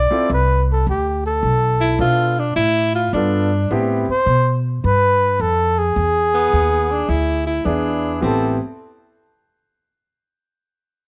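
Moderate spring reverb and studio ambience give this smoky, moody excerpt of small-group swing and bop a close, roomy sound. At 106 BPM in 4/4 with swung eighths, it sits in A minor and moves through D7, Bm7b5, Am9 and E7 before landing back on Am9. Up front, a mellow, close-miked flugelhorn carries the melody with light vibrato, a soft attack and scooped notes, while a pizzicato upright bass on gut strings lays down a woody, thumpy foundation. A warm tenor saxophone enters at 1.8 seconds with a second line sung in jazz style with vibrato. The concert grand piano sounds polished, intimate and present, with audible action noise and long sustain; it accompanies until 4.1 seconds and returns at 7.6 seconds.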